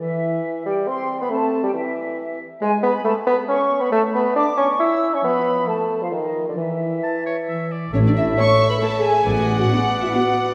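Heard from further back in a wet scoring stage with a 1.9-second reverb, this playful, mischievous film cue in A major moves at 137 BPM in 3/4, opening with an airy, distant flute ensemble, a mellow, up-front bassoon and a dark French horn section holding sustained chords. A clear oboe joins at 7.0 seconds, and from 7.9 seconds, as the second section begins, a chamber violin section adds a second line while cellos, a tuba and a symphonic double bass section sound a brief low A beneath. Moments later, a quiet violin melody and a background viola section, bowed sul tasto, fill out the whimsical ending.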